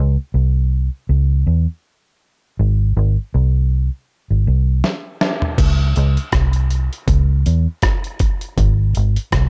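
A dark, foam-muted electric bass opens this meditative, heavy dub reggae excerpt on its own, its round, punchy tone sitting up front in a dry room with a loose sixteenth-note swing. At 4.8 seconds a gritty, compressed sampler-style drum kit arrives with a fill across a brief stop, then settles in with a thumpy kick, medium-tuned snare, rim clicks, hi-hat, toms and crash. From 5.6 seconds the second section carries bass and drums together through to the end.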